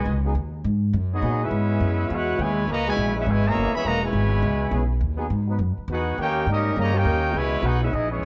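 Close, detailed microphones capture a large studio with a moderate reverb in this dramatic, swinging big band excerpt, which is in G# minor at 206 BPM with a 61% swing on the eighth notes. A clear, vintage trumpet section with vibrato carries the melody up front, a tight, clear trombone section with light vibrato plays a second line, and a woody, thumpy pizzicato upright bass on gut strings sits forward in the mix. A dark, distant trombone section holds roomy sustained chords from 0.2 to 7.2 seconds over a progression that moves from G#m7 through C#m7 and D#7.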